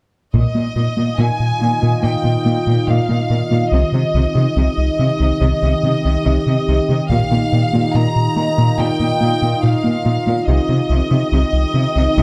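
A slow, straight 4/4 pulse at 71 BPM anchors this vast, futuristic stretch of hybrid orchestral and electronic film score, with a taiko ensemble struck with hard sticks sitting in the background, compressed and saturated, from 0.3 to 2.0 seconds and again from 7.1 to 8.7 seconds. Beneath it a round, deep analog bass plays a dark, nasal riff of fast-attack, sustained tones, while a cello section adds a rich, smooth bowed line with vibrato in the low register. From 1.1 seconds an evolving analog drone of detuned sawtooth and pulse waves, softened by chorus and a moving notch, holds mellow sustained chords that fade in slowly and linger. Above it a symphonic violin section carries the melody in a smooth, even, bowed line with vibrato, sitting a little lower in the mix than the bass. The harmony alternates between Bbsus4 and Cm, and the whole is placed on a moderate scoring-stage reverb captured with close, detailed microphones, in a section cut from a longer piece.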